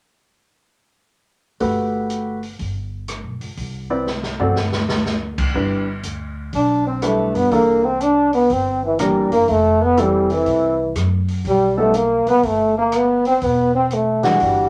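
An up-front trombone carries the melody from 6.6 seconds with light vibrato and scooped notes, just after a breathy, mellow tenor saxophone enters at 6.5 seconds to play a second line in the background. Underneath, a polished grand piano accompanies in G major alongside woody pizzicato upright bass and a distant, roomy drum kit with dark cymbals and a boomy kick, which plays a fill at 4.1 seconds before the horns arrive. This warm, sophisticated small-group swing and bop excerpt moves at 122 BPM in a wet club reverb.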